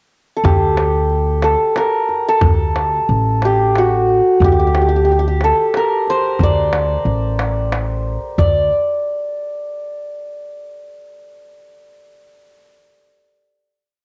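A bright, shimmering santur leads this short, complete Persian modal ensemble piece, its hammered, ringing tone sitting up front with a touch of cassette tape color as it plays an ornamented modal melody in dastgah homayun on D. The mood is stately and festive, moving at 90 BPM in a straight 3/4. After a brief pickup, santur, upright bass and tombak all enter together at 0.4 seconds. The pizzicato upright bass, woody and thumpy with gut strings, is also up front and places its notes on the low drum strokes. The tombak has a tight, vintage, band-limited sound, played with hard hands in a pattern of low and high strokes. A moderate spring reverb and studio ambience give the home cassette recording a gentle glow, and a final note arrives at 8.4 seconds, with the parts sounding until 8.7 seconds as it carries the piece to its close at 10.4 seconds.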